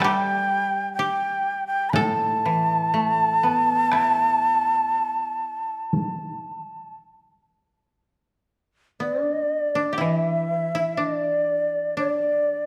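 Calm and austere, this fragment of Japanese traditional chamber music drifts at a rubato 60 BPM in A suspended pentatonic: an airy, end-blown bamboo shakuhachi carries the melody up front with vibrato and tongued notes, one fingerpicked koto weaves a woody second line while another gives dry, low accompaniment, and a taiko ensemble struck with heavy sticks plays in a live room until 6.2 seconds, within a moderate recital hall reverb.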